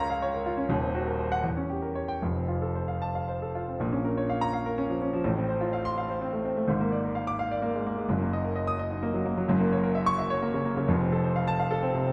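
A classical virtuoso piano study in six-eight metre, this short passage cut from a longer piece feels agitated and passionate, its pulse pushed and pulled with rubato. A lone grand piano carries the whole 12.1 seconds, its tone clear and present, sitting up front and ranging from Eb1 deep in the bass to Eb6 high in the treble. The harmony grows restless early, slipping through half-diminished and diminished colours before settling on a dominant chord, and a new section begins at 3.8 seconds. From there the progression moves through seventh chords before closing on the dominant again at 10.9 seconds, leaving the phrase unresolved. A moderate recital-hall reverb surrounds the instrument, and the overall production is dark and warm.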